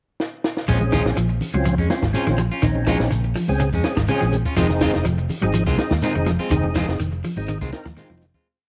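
A light reverb and small-room ambience frame this short, driving, funky afrobeat piece in Bb minor at 124 BPM, where a compact cocktail drum kit with a high-tuned snare and punchy kick plays a fill at 0.2 seconds before the groove settles on Bbm7, moving to Fm7 at 4.6 seconds. A dark, foam-muted vintage fingered bass sits up front with a round, syncopated riff, while a clean picked electric guitar repeats an arpeggio ostinato and a twangy, slightly broken-up second guitar adds funk-strummed stabs in upper chord shapes. A fat, lightly overdriven tonewheel organ with key click, third harmonic percussion, chorus vibrato and slow rotary speaker punctuates with rootless chord stabs, as grainy shekere and bright, damped hard-hand congas sit in the background before a fade-out that begins at 6.5 seconds.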